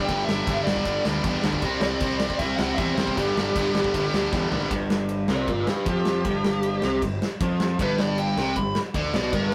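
A smooth, dark, overdriven lead guitar carries the melody through this rowdy, energetic punk rock excerpt, then takes a solo from 4.7 seconds to the end. Underneath, a straight 156 BPM beat in G major moves from G to C and back to G before the chords fall away for the solo. A bright, distorted electric guitar plays a picked riff the whole way through. A second overdriven guitar sits up front with its own riff, dropping out at 4.7 seconds and returning at 7.8 seconds. A punchy fuzz bass, picked and overdriven, growls at the bottom, while a big acoustic rock kit with gleaming cymbals, a medium-tuned snare and a punchy kick drives the song and marks the turn with a fill just before the solo. The rough rehearsal-room recording adds warm saturation and a moderate reverb.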